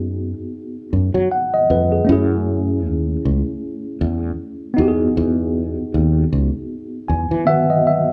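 Swung sixteenths at a slow 78 BPM in 4/4 carry this short, introspective, late-night neo-soul and R&B fragment, tuned to A4 = 443 Hz, where a worn, mellow, slightly out-of-tune tine electric piano and a warm, up-front fretless electric bass move through B6, F#m9 and Emaj9 in a moderately reverberant large studio room, with the electric piano adding a fill from 6.7 seconds and carrying on alone after the bass stops at 7.4 seconds until 8.1 seconds.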